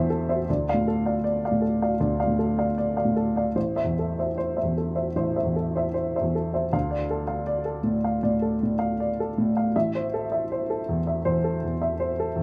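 A worn, slightly detuned upright piano plays alone and close up, its woody tone and audible action noise set in light reverb, as this reflective, wistful neoclassical minimalist piece drifts with rubato between Dm and Am chords across two short sections in a fragment cut from a longer work.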